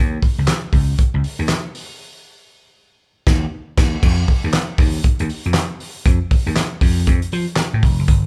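A strutting 16th-note swing at 60% drives this funk excerpt at 118 BPM in 4/4. The vintage slap bass opens at 0.0 s, electric and amped with a growly, punchy tone, ranging from F1 to F3 and sitting up front. The soul drum kit joins at 0.2 s with a fat snare, a tight kick and dark cymbals, including crash, hi-hat and handclaps, its acoustic sound captured in a tight booth with a pumping room and a rolled-off top. A break arrives at 2.0 s, and the band hits an accent together before a new section begins at 4.0 s. Recorded live in one room, the whole performance sits in a moderate large studio reverb that gives the funky groove body and depth.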